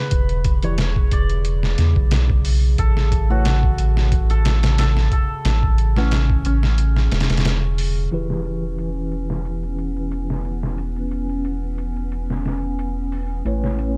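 A round, deep analog bass sits up front beside a gritty, pitched-down sampler drum kit with low-pass filtered hits in this dark, brooding trip hop excerpt, its kick dropping out from 6.8 to 8.1 seconds, while a shimmering hammered dulcimer melody carrying tape echo and 12-bit grit rings over a mellow tine electric piano with tremolo and a warbling, detuned tape-like pad, before a tense, string-like drone enters at 9.6 seconds.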